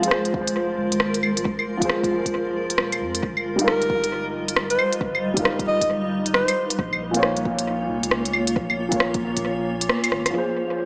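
Heard through a small-speaker sound soaked in chamber reverb and echo, this nocturnal, melancholic future garage fragment at 135 BPM in F minor sets a dark, woody upright piano with 12-bit sampler grit and dub echo over a cloudy, evolving granular pad and a deep, round sub bass, all three pumping with the sidechain above a swung 16th-note groove. An up-front electronic kit of claves, rim clicks and smooth, filtered hats carries analog delay, while a deep electronic kick enters at 0.3 seconds and drops out near the end for a band accent and a short drum fill. A breathy, whispered alto saxophone, close-miked and intimate with vibrato and scooped notes, sings a brief jazz-style solo from 3.7 to 6.7 seconds as the chords move from Fm through Ebadd9/G to Bbm.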